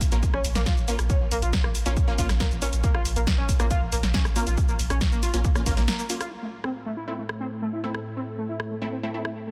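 Driving peak-time techno at 138 BPM with an industrial edge, this cut from a longer piece pairs a heavy, layered electronic kick and a dry analog drum machine of hi-hat, rim click, shaker and a punchy, soft-clipped snare with a round sine sub bass holding Bb1 under a Bbm chord. A gritty, screaming overdriven synth lead with lush chorus and tape echo carries the riff while thick, detuned rave stabs with dub echo hit alongside, both pumping against the kick. After a break at 5.9 seconds the harmony moves to Am, a filter sweep runs across the lead, and a resonant, phased drone with moving overtones enters up front at 6.7 seconds, all in a dense, heavily limited modern master.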